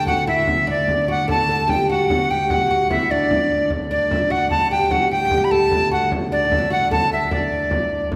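Rustic and festive, this medieval dance in 6/8 moves at 100 BPM in D major, tuned slightly high at A4 = 441 Hz, and is a short section cut from a longer piece. A reedy, airy tenor recorder carries the melody up front with a soft attack. Behind it, a distant, biting fiddle and a woody, plectrum-plucked oud with doubled strings play second lines, while a dark, boxy viola da gamba holds a ringing low D drone and a deep, saturated frame drum keeps the pulse, all bathed in a concert hall's reverb.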